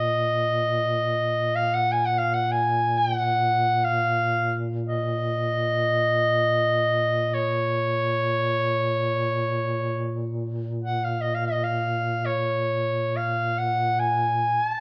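Unfolding in free time, this Caucasian lament in Bb minor carries a longing, solemn mood across a short cut from a longer piece. A breathy soprano saxophone sings the melody between Db5 and Ab5 with a soft attack and a vintage, classical bearing, while a dark, close-miked duduk holds a Bb2 drone with folk vibrato beneath it. Both parts sound throughout the 14.8 seconds, set up front in a moderate recital hall reverb.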